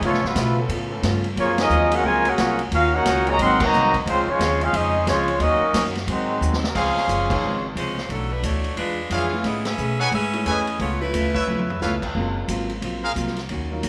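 A mellow, punchy trumpet section carries the melody in this joyful, swinging big band passage, over a clear trombone second line, a faint trombone pad of sustained chords, a dark, clean hollow-body guitar, a woody, thumpy upright bass and a vintage drum kit with dark cymbals and a high-tuned snare; at 6.6 s an edgy, close-miked saxophone section takes over the melody against present trumpet stabs, and a smooth grand piano joins at 7.3 s, all set in lush hall reverb with a rough home-demo feel.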